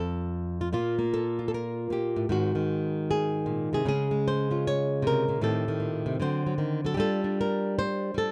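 A bright, fingerpicked flamenco guitar plays alone and up front from the first moment, carrying this relaxed, swinging solo jazz excerpt at 154 BPM in 4/4 with a lilting swung eighth-note feel. Its acoustic tone spans low F2 to a high Db5 as the harmony moves through Bb5, Ab7 and Dbmaj7 before turning to Am7b5, D7 and settling on Gm9 by 7.0 seconds. The close, dry 1970s-style studio sound carries just a touch of light reverb.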